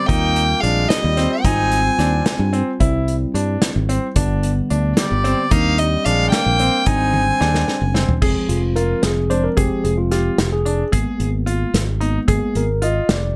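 A soft-edged, sul tasto violin carries the melody over a subtoned, scooped alto saxophone line in this brooding, tense progressive instrumental in 5/8 at 221 BPM (eighths) in F dorian, with both pausing at 2.5 seconds and returning at 5.0 seconds. Meanwhile, a clean electric piano heard through its built-in speakers, a brilliant grand piano with audible action noise playing arpeggios, a punchy fingered electric bass and an up-front acoustic drum kit played with bundle sticks keep going throughout, with a drum fill handing over to an electric piano solo at 8.2 seconds, all in a dry studio room in this excerpt from a longer piece.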